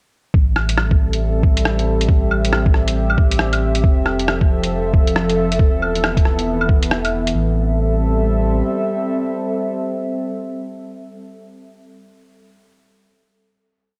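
A warbling, detuned tape-like pad carries this rainy, wistful future garage piece in A minor at 137 BPM, holding sustained chords from Am7 through Fmaj7 and Esus4 with chorus, reverb, 12-bit grit and sidechain pumping over a round sine sub bass, a muffled, thumpy two-step kick and a skittering shuffled kit of closed hi-hat, claves and rim click, before the drums drop away by 7.3 seconds and the pad lingers on a final Am7 chord, briefly joined by the sub bass, all on a home cassette recording.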